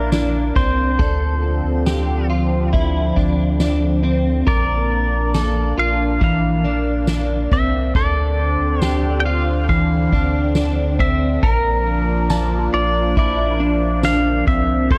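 Floating and dreamy, this dream pop passage drifts at 69 BPM in 4/4 with a straight feel, set in Bb lydian and tuned to A4 = 438 Hz. A twangy pedal steel guitar carries the melody, played with fingerpicks and slide in volume swells and trailed by tape echo, while a clean electric guitar picks compressed arpeggios through ensemble chorus and its own tape echo. Underneath, a swirling, detuned sawtooth pad holds sustained chords with phaser and chorus, and a round sine sub bass sits deep and up front. From 0.1 seconds, a soft-mallet drum kit adds a boomy kick, fat snare, ride cymbal and tambourine in a big room, alongside a very quiet, warbling FM bell that gives a vintage shimmer. The harmony moves between Dm7 and Bbmaj7 under light reverb and a dark production, in a section cut from a longer piece.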